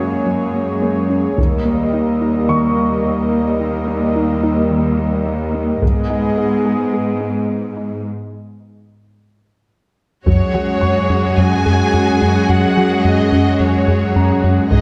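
Tense and vast, this cinematic hybrid orchestral and electronic film score moves at 108 BPM in 4/4, opening on a warm, detuned analog pad, a crystalline wavetable pluck arpeggio with delay in the background, a clear, distant cello section holding the bass up front and a dark, mellow grand piano texture, punctuated by heavy-sticked, band-limited taiko hits from 1.4 seconds, before a break at 8.0 seconds gives way at 10.3 seconds to a lush violin melody, a soft-attacked second violin line, a rich viola accompaniment and a rubbery, hollow square bass riff, all within a moderate scoring stage reverb.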